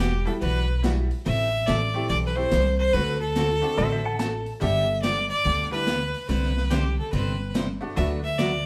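A clear, boxy fiddle carries the melody up front in this cheerful, down-home western swing excerpt, its bowed line intense and touched with light vibrato. The tempo sits at 143 BPM in 4/4 with a swung eighth-note feel in G major, moving through chords such as Emadd9, Am7, D7, G and Cadd9. A woody, thumpy upright bass played pizzicato on steel strings sits prominently beneath, while a bright, full-bodied picked dreadnought acoustic guitar adds accompaniment with a bit of finger squeak. A jangly, metallic tack piano joins at 0.3 seconds with a vintage, percussive sparkle, and a dark, smooth drum kit of hi-hat and snare swings quietly in the background. For a brief moment around 3.8 seconds, a compressed, clean lap steel guitar slides in up front with a short second line. The whole band sounds like it is playing live together in a moderate stone room, giving the sound a natural, lively ambience.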